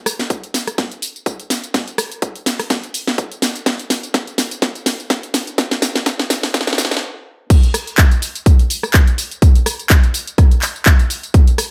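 A layered house drum kit enters first, with a cracking snare, warm hi-hats, handclaps, rim clicks, tambourine and crash cymbal. It is joined moments later by a punchy, overdriven electronic kick re-recorded in a large room, both parts sitting up front in a filtered digital ambience at 125 BPM with a light sixteenth-note swing. This aggressive, bouncy portion of a longer track builds through a drum fill, halts briefly at 7.0 seconds, then drops back in at 7.5 seconds.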